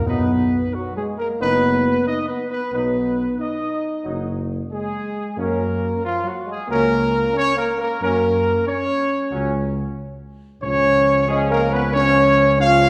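A majestic, regal brass chorale opens at 0.0 seconds, with a dark trumpet section carrying the melody up front over mellow French horns holding sustained chords. A vintage-toned trombone section sits loosely in the background, filling out the harmony, while a solo tuba anchors the bass with a soft attack and a smooth top. The trumpets and horns sing with light vibrato in a classical style, the horns tight as a section. The piece moves at a stately 91 BPM in straight 4/4, with the harmony shifting from B to F# and then to C#. At 10.6 seconds, timpani with soft mallets and calf heads add a round accent before the brass carries on to the cut at 12.9 seconds. A reverberant scoring-stage ambience gives the ensemble the spacious glow of a church or concert hall.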